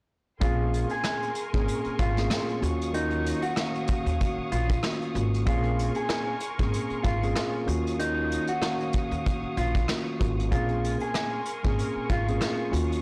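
A blown-out, overdriven sound with light reverb and studio ambience gives this short boom-bap hip-hop excerpt, cut from a longer piece, a dark and gritty mood. At 95 BPM in 4/4 with a lightly swung sixteenth feel in Bb minor, a vintage brush drum kit sits up front, its punchy kick, medium-tuned snare, rim click and hi-hat played with brushes and a rolled-off top. A woody pizzicato upright bass anchors the low end, while a mellow tine electric piano, clean and heard through its built-in speakers, carries the accompaniment up front. A dusky, clean electric guitar plays a fingered melody in a narrow range, touched with tape echo, and a bright, lush bowed string section adds intense sustained chords with vibrato further back. All five parts play together from 0.4 to 13.0 seconds over a slow alternation of Bbm9 and Ebm9.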